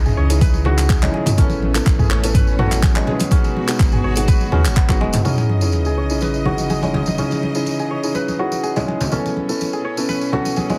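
Afro house with a hypnotic, spiritual mood, cut from a longer piece, where a rich, biting string section holds sustained chords under ringing kora arpeggios and soft stabs from a felt-muted upright piano, all three pumping against the beat, with the kora and piano low-pass filtered and trailed by tape echo. For the first 5.2 seconds a round analog bass and an overdriven deep kick drive the groove with an electronic kit of handclaps, hi-hat and toms, while jingly tambourine and bright, damped congas carry on throughout. By 5.2 seconds the kick, kit and bass have dropped out as an electronic sub drop lands as an impact and a filter sweep moves across the kora, all in a dry, heavily compressed, radio-like sound.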